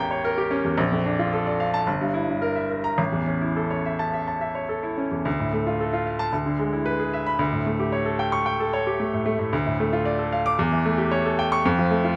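A passionate, stormy classical virtuoso piano study, this fragment of a longer piece unfolds in a flexible rubato over a 4/4 pulse. A solo baby grand piano, clear, polished and up front, ranges from G1 to D6, with its opening phrase giving way to a new passage at 5.3 seconds that circles back to D minor chords. Close, detailed miking and light reverb keep the sound clear and present.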